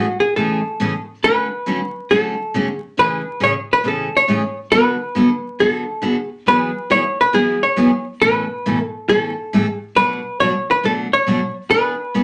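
A dark, clean, compressed hollow-body jazz guitar sits up front carrying the melody between F#4 and C#5 over a bright picked steel-string acoustic guitar accompaniment, in this playful, down-home swung country clip cut from a longer piece at 138 BPM in A major (tuned to A4 = 436 Hz), moving through chords like Amaj7, Dmaj7 and Bm7 before landing on E7, all set in a wet small room with a layer of vinyl crackle.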